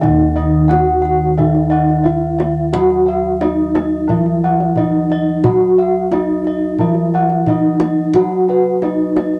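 Heard in a moderate small-room ambience, this hypnotic, stately Javanese gamelan fragment layers a mellow bronze metallophone melody over a lower metallophone accompaniment, while a higher metallophone and bright bossed gongs ring out arpeggios, round bossed gongs carry the bass, and a tight, dry, soft-handed kendang plays throughout the 9.4 seconds, with two of the metallophones shimmering from their paired tuning.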